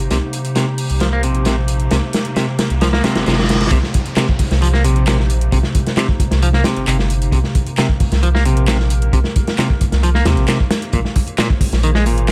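Lo-fi and crackling with light small-room ambience, this energetic, funky breakbeat excerpt at 133 BPM in C phrygian builds with a drum fill, faint riser and reverse cymbal before dropping at 3.7 seconds into crunchy, gritty up-front breaks with a punchy kick, metallic house hi-hats and handclaps, a deep saturated sub bass, a bright, clean semi-hollow guitar riff with low-pass filter and delay, and a warbling, nostalgic tape-like pad pumping with chorus in the background over Cm7 shifting to Bbm7.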